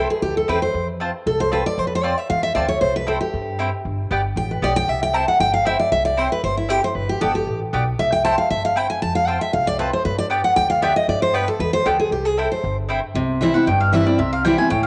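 Rustic and driving, this bluegrass excerpt in C major races along at 232 BPM, as a bright, full-bodied picked steel-string acoustic guitar sits up front and takes the solo until 13.2 seconds, when the round, double-strung mandolin, which has been adding stabs throughout, takes over, all over a woody, thumpy upright bass, with moderate spring reverb and the muffled top end of a home cassette recording.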